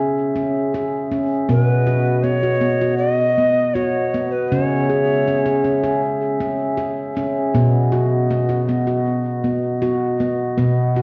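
Heard through worn, warbling cassette tape with drifting pitch and a wet studio reverb, this dreamy, gentle world-meditative fragment of a longer piece moves at 79 BPM in B major, with ringing stainless-steel handpan arpeggios played up front with a diffuse ambient delay, ethereal slow-attack glass harmonica chords sustained beneath them, and a hollow, wooden cedar flute melody that floats in from 1.5 to 6.0 seconds over a calm sway between C#m and B.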